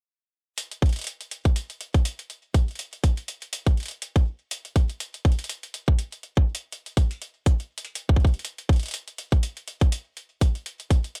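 Dry, with little reverb, this glitchy, melancholic IDM excerpt sets a tight, produced electronic kick drum up front, re-recorded in a small room, against a much quieter electronic hi-hat with a metallic, tape-warm analog edge from the same small space. The hats begin at 0.6 seconds and the kick follows at 0.8 seconds, both riding a light swing on the sixteenths in 4/4 until the drums stop around 11 seconds.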